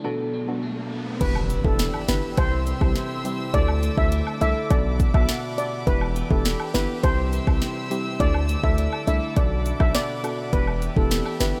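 A mellow, shimmering steel pan carries the melody through this hypnotic, sultry dancehall passage, entering at 1.2 seconds after a brief break of dark, chorused soft round pluck accompaniment and clean picked electric guitar arpeggios with analog delay beneath a background electronic riser that lands on an impact as the pan arrives. The pan is then joined by a punchy, heavy 808-style bass, an up-front afro-pop drum kit with deep kick and sharp snare, floating sul tasto strings pumping under sidechain, and close woodblock and cabasa tucked behind, all set in a light reverb.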